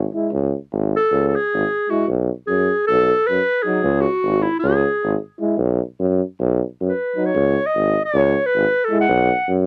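Balkan folk in 9/8 at 308 BPM in eighths, fiery and restless in C# minor, this short cut from a longer piece sets a warm, up-front clarinet soloing from 0.3 seconds with cassette-tape coloring over a clear, vintage tuba bass with light vibrato, while a mellow, vibrato-laden trombone and a distant, roomy euphonium supply soft-attack accompaniment through a C#m and B progression in a homespun cassette recording with light reverb.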